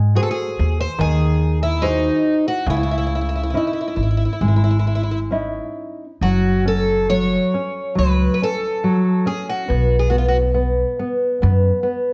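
Passionate and longing, this short fado-style ballad drifts at a rubato 65-73 BPM in 4/4, moving from C# minor into F# minor at 6.2 seconds. A fingerpicked nylon-string guitar, dark and classical with audible finger squeak, carries the accompaniment up front through chords like G#7, C#madd9 and F#m. Beneath it, a pizzicato upright bass with steel strings gives a woody low foundation. From 0.2 seconds a picked twelve-string acoustic guitar sings the melody with a shimmering, octave-doubled tone, falling silent at 10.4 seconds after the harmony has settled onto a B5 chord. The recording sits in a moderate recital hall reverb, and a worn, warbling cassette-tape quality with drifting pitch lends the piece a faded cast.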